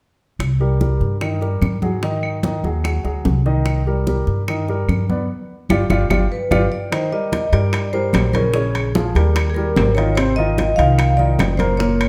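A fiery, driving Afro-Cuban jazz excerpt opens at 0.4 s with thumpy, up-front pizzicato upright bass, round low-tuned bongos, background congas and woody claves, joined almost at once by a natural, short-sustained baby grand piano in accompaniment, while a metallic vibraphone with slow motor vibrato and slapback echo takes the melody at 6.3 s and saturated metal-shell timbales arrive at 6.9 s after a band accent and drum fill, the whole set in a large studio reverb.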